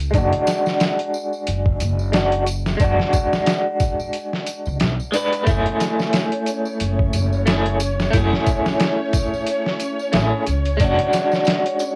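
A woody, dark upright bass opens this brooding trip hop fragment, its plucked gut strings thumpy and up front with a touch of tube saturation. Almost at once a bright, twangy electric guitar through a small old amp joins in, slightly broken-up and lo-fi, colored by tremolo, tape echo, cassette tape character and a filter sweep that runs through the whole passage. Beneath it sits a gritty, pitched-down sampler-style drum kit with a thumpy kick and medium-tuned snare, compressed and placed forward in a small room, while a soft-handed tambourine taps along close and dry in the background. At 5.5 seconds a string machine with cellos enters, adding full-bodied, evolving sustained chords with ensemble chorus and vintage 12-bit grit. The bass drops out at 11.0 seconds, leaving the guitar, drums, tambourine and strings to carry the melancholic, cassette-worn home-recording mood to the end of the cut.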